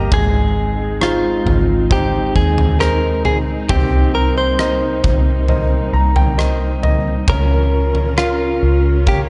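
Tender and emotional, this short pop ballad excerpt pairs an up-front, clean picked electric guitar melody with lush bowed strings, a polished concert grand piano that adds a fill from 5.5 to 7.3 seconds, a round, foam-muted fingered bass, and a punchy big-room drum kit of kick, rim click and toms, moving from Ab to Cm7 to Bbm/Db in a dark production with light studio reverb.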